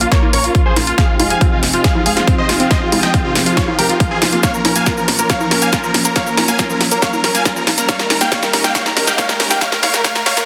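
Uplifting trance at 139 BPM in Bb dorian, soaring and euphoric, this short cut from a longer piece is one continuous build-up with a drum fill and filter sweep, moving through Bbm, Fm7, Bbm and Eb. A huge, detuned supersaw lead carries the melody up front with sidechain pumping, low-pass filtering and digital delay, joined by a very quiet grand piano playing a second line, while a silky, string-like pad with ensemble chorus and a round analog pluck playing arpeggios through dub echo sit in the background over a tight sequencer bass. An overdriven, layered kick and a dry, punchy analog drum machine with congas, hi-hat, shaker and snare drive the beat, a faint riser enters at 3.2 s, and the dense, heavily limited master adds a moderate digital room reverb.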